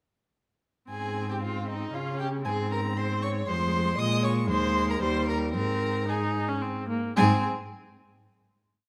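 Set in a moderate recital-hall reverb, this short, complete classical-period movement for string quartet in triple time is lively and graceful, with all four players entering together at 0.9 seconds. A dark, intimate first violin carries the melody sul tasto with light vibrato, a soft attack and an airy bow. A rich, smooth, more distant second violin doubles the tune at the octave, while a bright, focused viola adds tremolo chords in the rhythm of the tune, sustained chords and answers at phrase ends, and an up-front, warm cello anchors everything with sustained bass and passing notes before the quartet settles on a final chord from 7.2 seconds.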